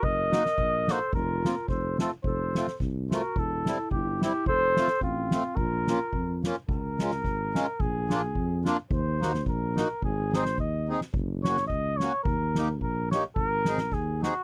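A lightly swung 2/4 pulse at 108 BPM drives this festive, jolly slice of alpine dance-band folk, with a soft-mallet drum kit giving a fat snare, boomy kick and crash cymbal, plus a fill at 10.9 s, under a dark, close-miked tuba bass line. Up front, a clear, vintage-toned flugelhorn carries the melody with light vibrato while a reedy accordion with slow beating fills in the accompaniment, and a distant, soft-attacked clarinet plays a second line in the background until 6.4 s. The music settles into Db major at 6.7 s, captured as a dry, close 1970s-style studio recording with light reverb.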